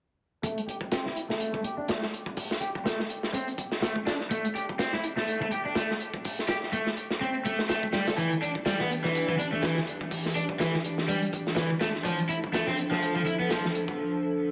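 Breakbeat in A minor at 124 BPM, this funky, swaggering clip cut from a longer piece rides a swung 16th-note groove on a crunchy, saturated kit of kick, snare and hi-hat, dark and rolled-off on top, as a bright, overdriven electric guitar riff sits up front under a filter sweep and dub echo. From 8.8 seconds a warbly, detuned tape-like pad adds sustained, nostalgic chords with chorus, 12-bit sampler grit and sidechain pumping, while the harmony moves from A7(no3) through Em7 to F6. The mix is echo-heavy, wrapped in a wet chamber reverb over small-room ambience.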